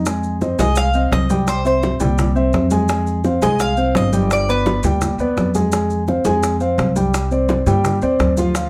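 Latin Cuban son and guajira with a sultry mood, built on a dark, boxy concert grand piano playing arpeggios and a woody pizzicato upright bass, both up front in a light reverb. Round, dry bongos, ringing low-tuned congas set in the background, and grainy maracas carry the percussion. A bright, metallic Cuban tres picks a melody on its doubled strings from 0.6 to 4.8 seconds of this short excerpt.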